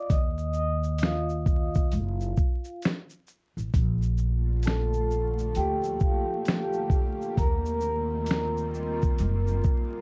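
A mellow soft-mallet vibraphone with a slow motor vibrato takes the lead in this dreamy, nostalgic lo-fi hip hop excerpt, ringing through plate reverb over woody pizzicato upright bass and a gritty, thumpy sampler-style drum kit of kick, fat snare, hi-hat, shaker and finger snaps, while a cloudy granular pad drifts in at 4.2 seconds beneath the dark, vinyl-crackled production.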